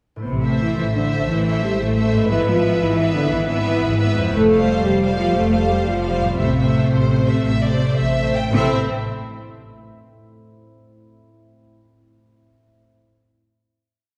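In a straight 12/8 at roughly 108-119 BPM counted in dotted quarters, this short, heroic adventure cue in A minor carries a swashbuckling, adventurous mood. The theme begins at 0.3 seconds over Am, E/G#, Fadd9 and back to Am, then slows from 5.0 seconds and settles on a final chord held from 8.5 seconds. The melody comes from a lush symphonic violin section with vibrato, soft attacks and syncopated chords, backed by a focused, more distant studio violin section on a second line and a smooth viola section in the background. A close, rich cello section doubles the tune at the octave and in sixths. The double bass section gives even, sustained bass on the beats. A mellow, punchy French horn section carries sustained chords and melody in a classical style, while a ringing concert harp adds fingerpicked arpeggios and rolled chords, all heard from further back in a wet scoring-stage reverb.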